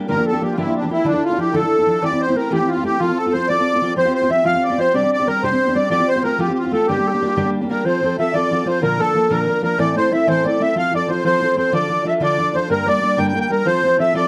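Spirited, dark and lively, this Celtic folk excerpt moves in 6/8 at 124 BPM in G dorian, with a straight feel and two sections that turn at 7.9 seconds. Up front, an accordion carries the melody with a reedy, sweet voice colored by its light tremolo tuning. Beside it, a fingerpicked steel-string acoustic guitar with a jumbo, full-bodied tone plays the accompaniment, and finger squeak can be heard. A baroque flute sits in the background on a second line, its wooden, pure sound marked by vibrato, a crisp attack and rolled-off highs. The chords wander from Gm7 through Dmadd9, F and Csus2 before moving through F, Bb, Am, Dm and Gm, all heard in a moderate small-room ambience.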